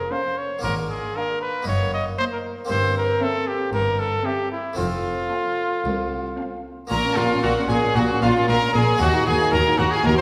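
Baroque-style classical concerto movement in Bb minor, stormy and driving at 115 BPM in a straight 4/4, cut from a longer piece and tuned slightly high at A4 = 445 Hz. A clear, softly attacked trumpet carries the melody up front with light vibrato, joined by a full-bodied French-style harpsichord and period gut-string sections: violins on a high melody and a second line, a dark, nasal viola section, and a rich double bass with cello section that enter together at 0.6 seconds. The ensemble sits in a reverberant recital-hall acoustic, and the harmony moves from Bb minor through Eb minor and C7 to F before a new section begins at 6.9 seconds back on Bb minor.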